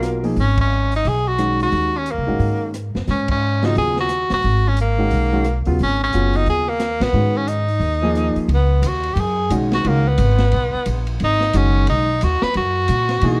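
Lightly reverberant, this excerpt from a longer modal jazz piece swings with an intense yet cool mood, as the bright, forceful tenor saxophone leads up front with vibrato and a plate-reverb sheen. A natural grand piano comps underneath, the woody, thumpy pizzicato upright bass sits forward in the mix, and a dark, smooth drum kit with boomy kick, rim clicks and dark ride cymbals plays quietly in a small room. The band hits accents together at 0.5, 3.2 and 7.0 seconds before the harmony shifts from G#m11 to C#9sus4 at 8.5 seconds for the next section.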